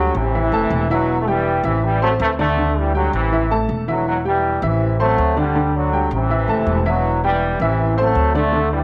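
Fiery and driving, this short salsa excerpt sets a bright, punchy trombone section with light vibrato and slapback echo up front on the melody, over a woody upright piano's accompaniment and a dark, plucked upright bass cycling through A minor, E minor and D suspended chords, all in a small room with moderate spring reverb.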